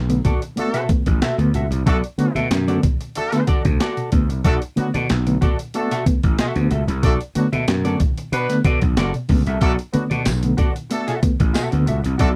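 This dry, close recording has a 1970s studio character, with little reverb around most of the parts. It is a short cut of cool, funky funk in 4/4 with a straight feel, resting on a single Bm7 chord throughout. A growly, overdriven slap bass sits up front beside a compressed, sampler-style breakbeat kit with a thumpy kick, medium-tuned snare and hi-hat, while a reedy electric piano plays stabs through a fast tremolo. A clean, hollow-body electric guitar, played with the fingers, adds accompaniment through analog chorus. From about 0.6 seconds a tight horn section with octave doubling and vibrato carries a second line from a distant, roomy place. Low-tuned congas stay very quiet underneath, and a jingly, vintage tambourine appears in the background from 10.3 to 11.7 seconds.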